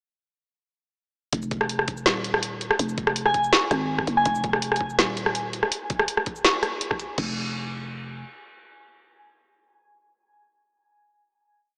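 An up-front electronic drum kit drives this tense and dark half-time drum and bass piece at 164 BPM in F phrygian, laying down a sparse beat from 1.3 s with a woody snare, bright closed hats, rim clicks, shaker and crash cymbal. Beneath it sits a compressed, gritty electronic kick, overdriven and thumpy, while a growling, buzzy 808-style bass holds long, dark low notes. At 3.3 s a soft, pure FM bell with a vintage, warbling character enters briefly on a high Ab, coloured by chorus, phaser and dub echo. The whole track is a single drop that gives way at 7.2 s to a final bass note ringing out. A huge ambient reverb and a small-speaker sound lend the mix a hazy, boxed-in atmosphere.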